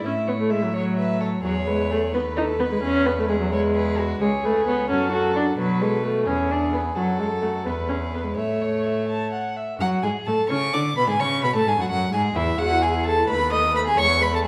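Graceful and cheerful, this quick classical-period string quartet movement in A major moves in 6/8 at 86 BPM. A warm, up-front first violin carries the melody with light vibrato over a rich, more distant second violin line, an equally forward, reedy viola accompaniment and a bowed cello bass, all four parts played by single players in gut-string period style within a moderate recital-hall reverb, in a passage cut from a longer piece.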